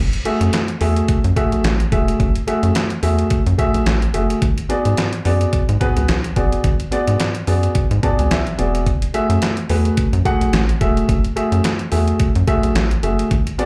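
A swung sixteenth-note groove at 108 BPM drives this danceable, late-night stretch of early-eighties boogie funk in F# minor. A detuned 8-bit drum machine, up front and overdriven, supplies a thumpy kick, a medium-tuned snare, hi-hat and handclaps beneath a rubbery, hollow square-wave bass with a dark, resonant pluck. A warm baby grand piano, carrying a slapback echo, accompanies on F#m9 and G#m7b5 and plays a brief fill from 7.8 to 8.9 seconds, all heard as if through a club PA.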